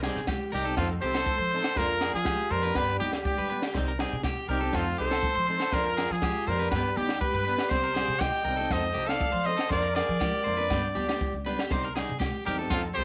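A moderate plate reverb and small room ambience give this danceable highlife guitar band excerpt a warm sound. A brilliant, forceful trumpet with light vibrato and scooped notes sits up front from 0.5 s, while a breathy, whispered alto saxophone carries a second line in the background. Beneath them, a twangy, slightly broken-up electric guitar plays arpeggios with slapback echo, a fingerpicked steel-string acoustic guitar adds finger squeak, and a woody, growly upright bass joins a compact cocktail drum kit with punchy kick and high-tuned snare, while ringing agogo bells, grainy maracas and thick-skinned congas sit behind.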